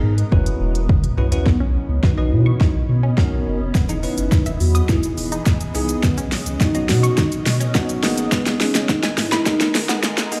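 Heard as if through a big sound system in a bare room, the recording carries a large studio reverb and a high-pass filter that trims the lowest rumble, giving this summery, upbeat dance-pop excerpt an airy, spacious sheen. From the start, a bell-like tine electric piano plays bright, clean accompaniment with a subtle chorus, over a cloudy, blurred granular pad that pumps with the sidechain alongside a deep, round sine sub bass. A smooth, electronic R&B drum kit sits up front with a soft kick, fat snare, silky hats, shaker and toms, and a drum fill leads into the main section at 1.5 seconds. There a velvety, dark synth lead enters with the melody, colored by chorus, tremolo and tape echo, while a lush, punchy pluck spins detuned arpeggios in the background with a moving notch and its own tape echo. A build-up and filter sweep run through this stretch as the chords move from Badd9 to Emaj7, back to Badd9 and on to G#madd9, keeping the energy lifting until the cut at 10.4 seconds.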